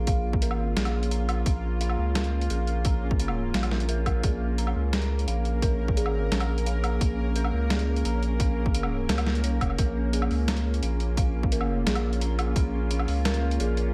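Heavy and tense, this half-time drum and bass passage is cut from a longer piece. A string-like drone with a slow attack, ring modulation and vibrato holds sustained chords under sidechain pumping, while an eerie, inharmonic FM bell plays arpeggios through chorus, phaser, delay, a low-pass filter and gritty 12-bit sampler texture. Up front, a deep, saturated sub bass sits beneath a hard-clipped, overdriven electronic kick and a pitched-down, tape-warm sampler-style kit of hi-hat, snare and woodblock, all set in light digital ambience.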